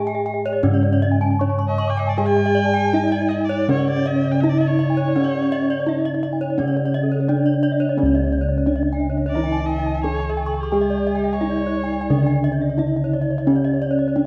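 Up front and close, the bossed gongs carry the bass with a round, beating, full bronze tone that anchors this ceremonial, brilliant Balinese gamelan excerpt in C# pelog, moving in a steady 4/4 at 78-87 BPM. A bronze metallophone struck with a wooden mallet leads the melody, its paired tuning producing shimmering beats, while a second metallophone played with a horn mallet sits in the background with low accompaniment. Two more metallophones spin arpeggios high above: one dry and close-miked under a wooden mallet, the other airy and bright under a horn mallet, both shimmering from paired tuning. From 1.7 s to 12.3 s a single bowed erhu adds a warm, smooth, even second line with vibrato and portamento. The piece moves into a new section at 8.0 s, and the whole sits in a dark production with the wet bloom of a recital hall reverb lasting 1.8 s.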